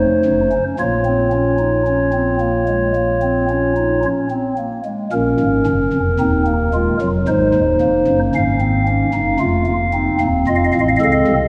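A wet church reverb with a 2.9-second decay surrounds a single pipe organ, its stopped flute stops set up front in the sound with a soft, hollow tone and a touch of chiff. This classical, baroque-style four-part fugue in Bb minor moves at 56 BPM in a straight 4/4, and its mood is serious yet driving. The organ plays alone for the whole 11.5 seconds, its baroque voicing ranging from Eb1 at the bottom to F5 at the top. The harmony opens on a rootless F, settles into Bb minor at 0.8 seconds, and turns to F7 at 9.4 seconds. The passage falls into two sections, the second beginning at 5.1 seconds, and it is cut from a longer piece.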